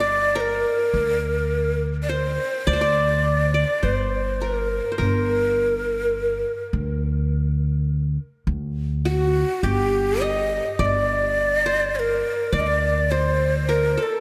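A breathy, close-miked ney leads this longing, soulful Arabic maqam fragment in 10/8, carrying the melody up front with vibrato and an unsteady, tongued edge while a bright, fingerpicked qanun traces a second line alongside it, both trailed by a diffuse ambient delay. A woody, thumpy pizzicato upright bass anchors the low end until 14.0 s. A lush hall reverb soaks the whole mix in a dreamy haze.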